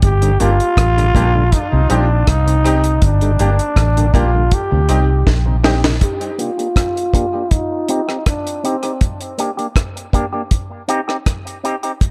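A dry, up-front reggae drum kit with a tight kick and high-tuned snare sets a straight 80 BPM dub groove in G minor alongside a dark, round, foam-muted electric bass that plays until 6.0 seconds. In the background, a softly overdriven tonewheel organ with a slow rotary speaker adds accompaniment while a woody, slightly detuned upright piano offers echoing stabs. Over the top, a raspy, growling trombone with scooped notes and vibrato carries the solo melody through tape echo until 9.0 seconds. A bright, twangy envelope-filtered electric guitar enters at 6.4 seconds under a filter sweep, giving this spacious, meditative passage of a longer piece a fresh colour.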